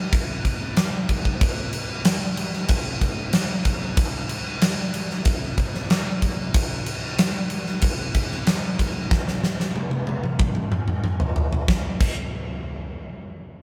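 Bittersweet and restless, this short rock cut from a longer piece moves at 93 BPM in a straight 4/4, carried by a huge acoustic arena drum kit of kick, snare, toms and crash cymbal playing from 0.1 to 12.2 seconds. The kit sits up front with a punchy kick, fat snare and bright cymbals, its hall sound and pumping room giving it size. A drum fill runs from 9.1 to 11.7 seconds before the passage shifts into a brief new section, all captured with light reverb like a band playing live in one room.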